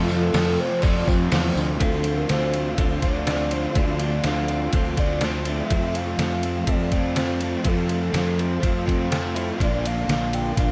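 A brooding, hazy shoegaze and dream pop excerpt at 123 BPM in D minor, built around a hollow, woody clarinet-like synth lead that carries the melody through chorus, phaser and tape echo over a very quiet, vintage cello string machine, with chords moving from F through Dm7 and back to F before settling on Bbmaj7. Three guitar riffs fill the middle: a clean, direct-recorded part washed in reverse reverb, an overdriven semi-hollow guitar with analog chorus, and a double-tracked raw garage guitar that drops out at 1.8 seconds. Up front, a round, punchy fuzz bass and a thumpy, detuned 8-bit drum machine drive the dark, dry production, while a jingly tambourine sits in the background only until 1.7 seconds.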